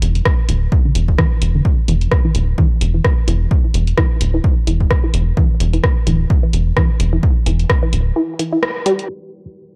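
A rubbery, hollow square bass pumping under the sidechain and a punchy, low-pass-filtered analog drum machine of ticking hi-hats and rim clicks open this sparse, cool, swung minimal techno excerpt, joined almost at once by a squelchy, detuned blip-pluck riff swept by a filter and colored with phaser and analog delay, while a punchy, up-front electronic kick drives the groove until a brief break at 8.2 seconds brings a band accent at 8.6, all caught in a dry, gritty hardware sound.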